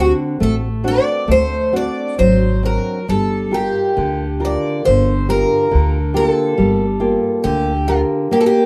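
A picked twelve-string acoustic guitar carries the melody up front, its shimmering, octave-doubled tone ringing through this short fado-style ballad fragment with a passionate, mournful feel. Beneath it, a fingerpicked nylon-string guitar supplies the accompaniment, deep and classical in character with fresh strings and the occasional finger squeak. A pizzicato upright bass adds a woody low line and drops out at 8.0 seconds, while both guitars continue to 8.7 seconds. The phrasing is rubato in 2/4, moving from a D7 chord to Gm7 at 3.1 seconds. Light reverb surrounds the parts, and the whole has the rough character of a home demo, with audible lossy compression artefacts.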